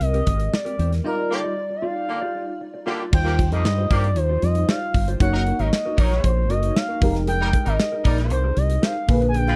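A smooth, expressive sawtooth synth lead with chorus and vibrato carries the melody in this slick, urban 1980s jazz-funk pop clip, over a lush, dreamy FM electric piano with a soft pad layer, a dark, clean electric guitar riff in the background, a round, up-front fingered bass and a tight modern drum kit, with a clear, roomy horn section entering at 1.3 seconds amid a band accent and break that runs to 3.1 seconds, all in a dry, close studio sound.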